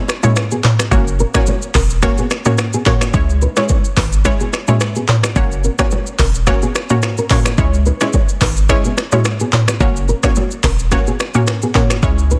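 Mellow and smooth, this afrobeats excerpt moves at 108 BPM in 4/4 with a gentle 16th-note swing, cycling between C#m and F# throughout. A small, thumb-plucked nylon-string guitar opens the riff with fresh strings and a touch of digital delay, joined almost at once by an electronic afro-pop drum kit that sits up front with a deep kick, crisp hats, finger snaps, handclaps, rim clicks, shaker and toms, its snare softly clipped and its tone tape-warm. An analog pluck built from detuned sawtooth waves adds bright, round accompaniment with a fast attack, short decay, filter sweep and chorus, also placed forward in the mix. At 0.9 seconds a boomy 808-style bass arrives, a sine tone with a noise layer whose fast attack decays into a deep, warm low end. Very quiet bongos and congas, played with soft hands in a small room, fill in beneath it all, and the whole track carries light reverb under a dense, heavily limited modern master.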